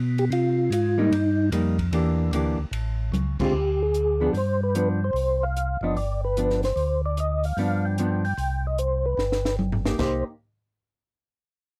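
A dry, close 1970s-style studio sound with light reverb frames this late-night, soulful soul jazz organ trio, swinging in 4/4 at 149 BPM in C harmonic minor. A piping, lightly overdriven tonewheel organ with key click and slow rotary speaker carries the bass line from the start, while a second, flute-like percussive organ with chorus vibrato takes the mellow melody, and a clean, fingered hollow-body electric guitar joins on accompaniment at 1.0 s. A compact cocktail kit with a punchy kick, high-tuned snare and dark cymbals sits lower in the mix, adding drum fills at 3.1 s and 9.2 s along with a band accent.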